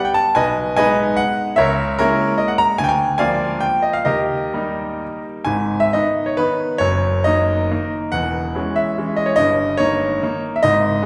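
A bright, up-front grand piano plays alone from the very start, carrying a romantic classical dance in triple time with dotted rhythms and a flexible, rubato pulse. The mood is nostalgic and wistful, and a new section begins at 5.5 seconds, moving through a chain of minor and dominant chords. The brilliant, natural piano tone rings in the wet reverb of a church or concert hall in this short excerpt cut from a longer piece.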